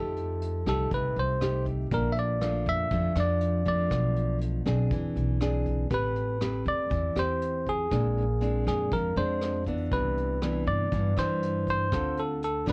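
A straight 4/4 pulse at 120 BPM carries this romantic, sunny bossa nova excerpt, where a bell-like, bright tine electric piano sings the up-front melody over fingerpicked nylon-string guitar with a full-bodied tone and audible finger squeak, a woody, thumpy pizzicato upright bass, and a vintage brush kit joining at 0.2 s with punchy kick, hi-hat and rim click under gritty 12-bit sampler texture, the mix set in light reverb with a cassette tape character as the chords move from F9 through Bm7b5 and E7b13 to Am9 and on to Dm7.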